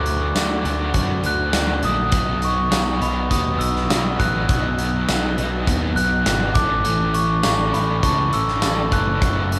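A soft, bell-like glockenspiel played with rubber mallets carries the melody from the very start, ringing high over two crunchy overdriven electric guitars that sit in the background with picked riffs, one of them shimmering with harmonic tremolo. This is a wistful yet carefree indie rock passage at 102 BPM in a straight 4/4, set in A major and cut from a longer piece. A bright, punchy picked electric bass anchors the low end from the outset. The big acoustic rock kit joins at 0.1 s, up front and mid-forward, with a tight kick, a medium-tuned snare, hi-hat and tambourine, its top end rolled off. The chords move from D to B at 2.1 s and settle on A at 6.6 s. The band sounds as if it is playing live in one large studio room, with a moderate reverb lending the whole a roomy glow.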